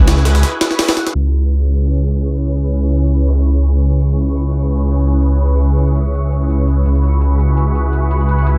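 Frenetic and raw, this drum and bass cut, lifted from a longer jungle track, opens on a thick, menacing detuned saw bass up front, its beating, saturated tone holding a low C#2 under silky, vintage string-machine chords that fade in slowly and linger with an ensemble chorus. A pitched-up jungle drum kit with a gritty, high-tuned snare and hi-hat sits up front from 0.1 seconds, then drops out at 1.1 seconds after a short break. From there a compressed breakbeat kit carries on in the background, its hats, snare and small-room ambience thinned by high-pass filtering, while a filter sweep runs through the rest of the passage. The harmony moves from Eadd9/C# to C#m7 and returns to Eadd9/C# near the end. At 3.3 seconds a faint, twinkling granular texture enters high above, adding an octave-up shimmer with its own reverb.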